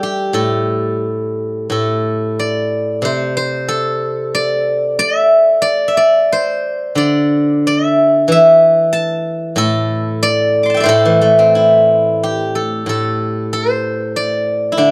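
A silvery, ringing steel-string zither played with fingerpicks carries this elegant, longing Chinese traditional solo in the A yu mode, moving freely in 2/4 around 87-95 BPM across a range from A2 to D6, with its bright acoustic tone placed up front in a dry, close 1970s-style studio sound, and its opening idea returning at 12.2 s before this fragment of a longer piece ends at 14.9 s.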